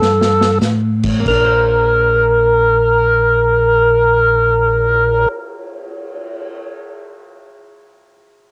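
Greasy and soulful, this short soul jazz organ trio fragment in Bb major drifts in free time, opening with a drum fill and a slowing of pace before settling onto a Bbadd9 chord at 1.3 seconds. Up front, a fat, lightly overdriven tonewheel organ with percussive third-harmonic attack and slow rotary speaker carries the melody, while a second tonewheel organ, round and dark with chorus vibrato and slow rotary, holds down the bass. A vintage acoustic drum kit with dark cymbals, a punchy kick and a pumping small-room sound sits low in the mix, and a clean, compressed hollow-body archtop guitar adds picked accompaniment in the background from 1.2 seconds, all heard through the soft haze of a home cassette recording with light reverb.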